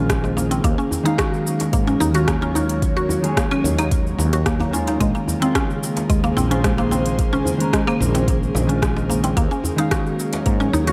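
A dark, clean electric guitar, a breathy pad, a woody mallet-like synth pluck spinning arpeggios and a growly fretless bass open this earthy, mystical organic downtempo excerpt, drifting between Bbm9 and Ebm7 chords. Just after the start, a deep overdriven electronic kick and a crisp drum kit of cabasa, claves, hi-hat and rim click arrive, with a rattling vintage djembe sitting in the background. Sidechain pumping breathes through the guitar, pad and bass, while delay trails the guitar and pluck, all set in light reverb and digital ambience.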